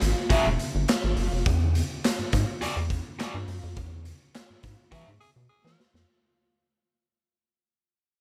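The recording is dry, with little reverb, and this short funk excerpt fades out across its entire 6-second length. At 104 BPM in a straight 4/4, it sits playfully in E mixolydian on an Eadd9 chord, driven by a raw garage drum kit whose punchy kick, medium-tuned snare, hi-hat and handclaps ring saturated and up front in a bright, pumping stone room. Underneath, a rubbery square-wave bass bounces through a hollow, resonant, wave-folded tone with a fast filter pluck and a dark sustain. A warm, overdriven electric guitar, picked and forward in the mix, supplies the accompaniment. The band hits an accent at 3.8 seconds, and a faint, raspy tenor saxophone line with light vibrato and an edgy, forceful bite slips in at 5.2 seconds, just before a drum fill at 5.5 seconds.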